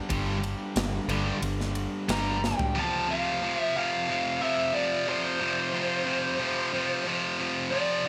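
A straight 4/4 hard rock riff at 90 BPM opens this driving, menacing excerpt, with two distorted electric guitars, a dark, round hollow-body bass and a tight, gritty metal kit of kick, snare, toms and ride under gated reverb all pounding out G5 until a drum fill at 2.4 seconds. A heavy high-gain guitar carries the riff from the start through the F5 section beginning at 2.8 seconds, while a biting lead guitar, overdriven with digital delay, enters at 2.1 seconds to sing a high melody. A moderate plate reverb and bright 1980s-style digital production frame the whole.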